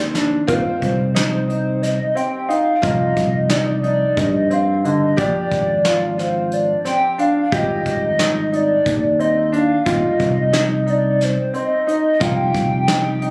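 A hollow, woody square-wave lead sits up front, carrying the melody between C5 and G5 with a sub octave, vibrato, chorus, plate reverb and digital delay. This bright, driving progressive instrumental moves in an uneven 7/8 with a straight feel, cut from a longer piece. A growly, direct fingered electric bass pushes from below, while a clear baby grand piano with long sustain and a worn edge spins arpeggios through its own digital delay. A dark, compressed archtop guitar adds very quiet clean picked accompaniment, and a soft brush kit, distant and roomy with a fat snare and tight kick, opens with a short fill before settling in at 0.5 seconds. The chords cycle through Eb6, Cm, Bb7 and Abmaj7, and the whole band sounds as if caught on a phone in a club, with moderate room reverb.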